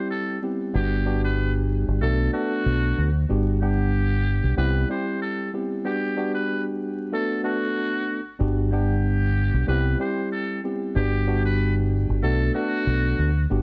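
A lightly swung 4/4 boom-bap groove carries this confident, warm hip-hop excerpt. A round, punchy fingered electric bass enters at 0.7 seconds beneath a worn, slightly out-of-tune tine electric piano cycling through Cmaj7, Gmaj7 and Bm7, while a metal-muted trumpet carries the melody in a buzzy, raspy jazz style with vibrato and scooped notes, and a break arrives at 5.8 seconds. The recording sounds like warbling old cassette tape, with vinyl crackle, faint mains hum, light reverb and a dulled top end.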